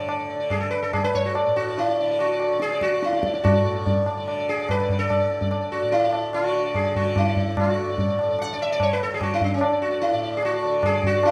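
Hindustani classical music in raga Yaman on D, serene and radiant, moving at 145 BPM in 5/4 and speeding up across this 11.3-second excerpt cut from a longer piece. An up-front, plectrum-plucked sitar carries the melody between C#4 and F#5, its buzzing tone shimmering with sympathetic strings, while a softly plucked, bright tanpura holds a low drone from D2 to D3 well beneath it. Low-tuned, ringing tabla joins at 0.1 seconds, close and present, and a recital-hall reverb with a 1.3-second decay surrounds the ensemble.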